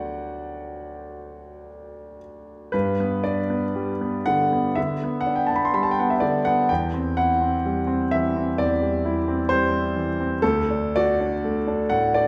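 A clear, intimate grand piano sits up front in a recital hall, its natural tone carried by a wet reverb that lingers for over a second, with the noise of the action audible beneath the notes. This short excerpt, cut from a longer work, is a romantic character piece for solo piano in G major, moving in a slow, rubato 4/4 at roughly 55 to 68 BPM. The mood is lyrical and hopeful, with the piano ranging from low D2 up to C6 across its 12.3 seconds. A brief opening passage rests on D before the music settles onto G at 2.7 s, opening a longer second section. From there the harmony passes to C over E at 6.7 s and returns to D near the close, leaving the phrase suspended as the hall rings.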